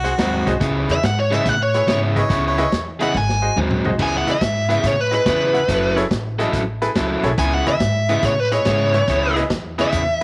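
Brooding and smoky, this short cut from an electric blues shuffle in 4/4 rolls along with a swung feel. From the very start, a clear harmonica with light vibrato, scooped notes and a touch of overdrive plays a second line in a jazz style until 2.9 seconds. Underneath, a bright upright piano with short sustain supplies accompaniment, a woody pizzicato upright bass holds the low end, and a vintage drum kit sounds muffled and lo-fi, with dark cymbals and a tight kick, adding a fill from 3.1 to 4.0 seconds. An overdriven semi-hollow guitar sits up front with a picked, hollow-body riff, while a biting lead guitar, dark and overdriven, carries the melody and takes a solo from 4.0 seconds to the end. The harmony moves among G#7, C#m7 and F#m7, and light reverb gives the band a small-room ambience.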